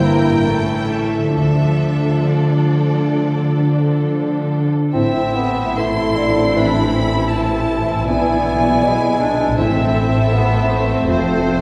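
Rubato phrasing in 4/4 shapes this melancholic, elegiac slow romantic movement for symphony orchestra, where a rich violin section sings the melody with vibrato above a darker, woody violin line, a lush viola section, and distant, roomy French horns holding sustained chords. A harp rings with fingerpicked arpeggios in the background, while a focused double bass section and a smooth, close cello section carry the bass. At 4.9 s a bright clarinet adds a second line and a soft-attack bassoon joins the accompaniment, and at 9.6 s very quiet timpani with calf heads sound briefly, all bathed in wet recital-hall reverb.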